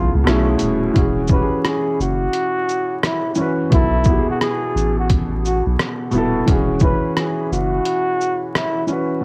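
Cosy and dreamy, this lo-fi hip hop fragment at 87 BPM in E major with a 16th-note swing sets a breathy, lightly vibrato-tinged flugelhorn melody with scooped notes and analog delay over a muted, mellow upright piano with audible action noise, a deep, round dub sub bass, and a muffled, compressed trip hop sampler-style kit with a thumpy kick, rim click, hi-hat and shaker entering at 0.3 seconds, all wrapped in cassette tape character, light reverb and vinyl crackle.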